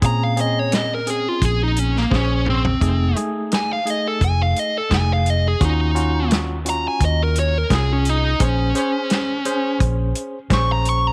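With light reverb, this brooding, mournful straight-eighth soul blues excerpt centers on a dark, smooth, overdriven lead guitar soloing up front over a round, foam-muted vintage fingered bass, a dry, mid-forward soul drum kit with a tight kick and a brief fill at 2.1 seconds, and a clean tine electric piano heard through its built-in speakers.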